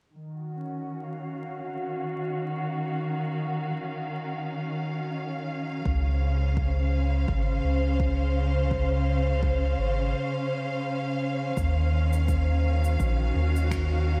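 At 84 BPM in 4/4, a deep, overdriven electronic kick sits in the background with a loose 16th-note swing, entering at 5.9 seconds alongside a soft, round dub sub bass whose triangle and square wave tone carries a fast attack, long sustain and tube saturation. Before that, a dark, lush symphonic string section plays sustained, bowed chords up front, its woody ensemble tone marked by vibrato and shaped by a low-pass filter sweep. The harmony moves in Eb dorian from Ebm9 to Dbmaj7 and back, giving this ambient dub passage a spacious, meditative mood. After a break, overdriven electronic shaker and finger snaps slip in faintly at 11.6 seconds, muffled by low-pass filtering and re-recorded in a large room, as the section shifts. A huge ambient reverb and vinyl crackle soak the dreamy mix of this excerpt cut from a longer piece.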